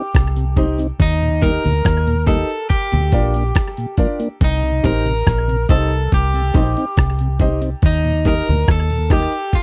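Serious and meditative, this short roots reggae excerpt in C dorian moves at 70 BPM over Cm, Eb and Bb chords, with a gritty, compressed sampler-style drum kit of thumpy kick, hi-hat and rim click up front beside a dark, round, foam-muted fingered bass, while a slightly broken-up, twangy electric guitar carries the melody through dub echo, a mellow tonewheel organ with key click and slow rotary speaker sits in the background, a woody upright piano adds stabs, and a faint cabasa rounds out a dry, close 1970s-style studio sound.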